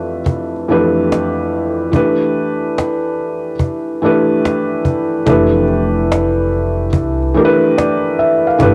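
A home cassette recording with a moderate spring reverb gives this short lo-fi hip hop cut a nostalgic, mellow haze. A felt-muted upright piano opens at the start and stays up front, its thick felt and audible action noise making the accompaniment soft and intimate, with a low-pass filter dulling its top end. From 0.3 seconds a snappy cajon played with hard hands sits close and forward, its snares rattling through a cassette tape effect over a gently swung 4/4 pulse. The harmony moves from Fmaj13 to Gadd9 and returns to Fmaj13 as the second section begins at 5.3 seconds. At that point a pizzicato upright bass with steel strings enters low and woody, adding a dark acoustic floor beneath the piano until the cut ends.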